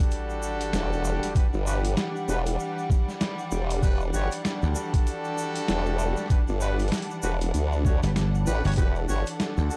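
Swaggering and gritty, this glitch hop excerpt opens on an Em9 chord with a sub drop impact, as a lush bowed string section with vintage 12-bit sampler grit holds sustained chords beneath bright horn stabs with digital delay, both pumping against the sidechain alongside a warbly, lo-fi pad in the background. A detuned formant-sweep wobble bass with chorus sits up front from 0.7 seconds, a thumpy, overdriven electronic kick arrives at 1.4 seconds, and a pitched-down boom bap kit adds a high-tuned snare and hi-hat over a grainy egg shaker. A punchy, foam-muted thumbed slap bass joins at 4.6 seconds, all within a dark, warm production with little reverb.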